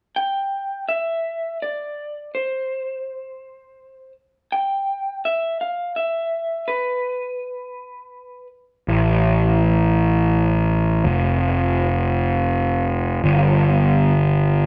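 This post-rock piece, cut from a longer work, moves in a brooding, cinematic three-beat metre. An up-front, slightly broken-up electric guitar through a small old amp carries the melody in a lo-fi, compressed tone from 0.2 s to 8.5 s. A louder, overdriven fuzz bass with a round, picked sound then plays low from 8.9 s to 14.7 s, with moderate reverb giving the feel of a band playing live in one room.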